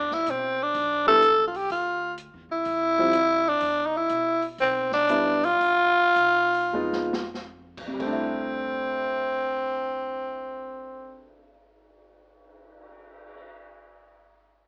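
A raspy, growling tenor saxophone carries the melody up front in this relaxed, swinging small-group jazz excerpt, joined at 1.1 seconds by a clear concert grand piano accompanying with deep bass, while a woody, thumpy pizzicato upright bass sits in the background and an open acoustic drum kit with dark cymbals and a boomy kick adds a fill at 6.7 seconds as the groove slows, all heard through an AM radio sound with faint mains hum and light reverb.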